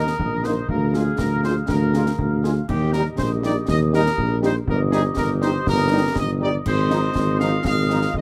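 Spirited and proud, this short cut from a longer military-style march for wind band moves in a straight two-beat stride. A bright trumpet section carries the melody with light vibrato, while a woodwind section, distant and roomy, adds a mellow second line. Close-miked French horns supply accompaniment and a tight trombone section holds sustained chords, both sitting in the background. Up front, a tuba with a soft attack anchors the bass, and a concert snare drum, bass drum and clash cymbals enter at 0.1 seconds with a close, dry, acoustic sound. The whole ensemble plays in a classical style under light reverb, with the harmony settling from the home chord toward a minor colour near 6.7 seconds.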